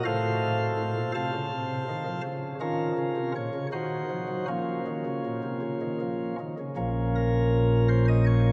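Grave and solemn, this brief fragment of a classical chorale-style piece in Bb minor moves at 80 BPM in 3/4, played solo on a chamber organ whose light, sparkling flute stops speak with a crisp chiff and sit up front, even as the listener seems placed further back in a cathedral whose 6.1-second reverb lets the chords bloom and linger, settling on Bb minor at 6.8 seconds.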